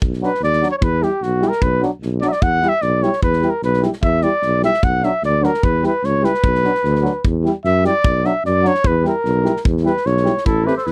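A straight 2/4 pulse at 150 BPM drives this restless, bittersweet Balkan brass band piece in E dorian sharp4, cut from a longer work, with a tight kick and medium-tuned snare from a small-room acoustic kit up front beside a soft-attacked, mellow tuba bass. The trumpet carries a solo melody with light vibrato and a smooth top over alternating Bm and Em chords, while a present French horn sits in the background and a punchy, roomy euphonium adds distant accompaniment. A warm clarinet slips in at 10.5 s for a brief second line, all captured in a dry, close 1970s-style studio sound.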